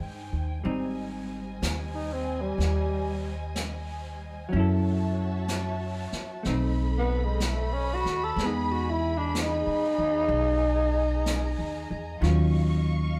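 Swung eighths at a slow 62 BPM in 4/4 carry this late-night, romantic jazz ballad fragment, where a breathy, raspy tenor saxophone full of subtone and scooped notes solos up front over clean, fingered hollow-body electric guitar accompaniment, a woody, growly pizzicato upright bass, lush bowed strings holding dark sustained chords, and distant brushed drums that enter at 0.6 s, the whole band sharing one live room's wet reverb as the harmony moves from Abmaj7 through B7b9 to Emaj7.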